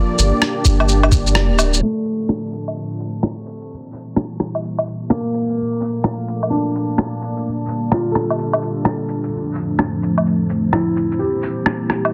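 Future garage at 128 BPM in D minor, cut from a longer piece, with a nocturnal, melancholic mood, a swung 4/4 feel and a chord cycle moving from Gm through Dm7, C7 and Bbmaj7. A mellow, intimate felt-muted upright piano, roughened by 12-bit sampler grit and trailed by dub echo, sits over a moody, detuned sawtooth analog pad with chorus, both pumping against the sidechain, while a round sub bass and a thumpy, pitched-down electronic kick appear only briefly near the start, the kick stopping at 1.2 s ahead of a band accent at 1.4 s. Muffled, compressed shaker, rim click and woodblock carry on to the end in a small room ambience, framed by a dense, heavily limited, low-passed master with a digital ambience.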